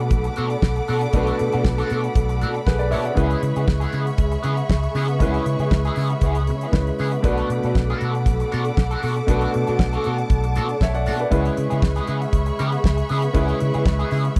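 Danceable and glamorous, this disco excerpt moves at 118 BPM in B dorian, with a damped 1970s drum kit sitting up front, its fat snare, tight kick and hi-hat joined by a bright, amped fingered bass run through an envelope filter. A clear grand piano with audible action noise and a slightly broken-up, twangy electric guitar with wah fill out the accompaniment, while a lush, distant string section holds sustained chords shifting between Bm7 and C#m7. The sound is dry and close, in the manner of a 1970s studio, with little reverb.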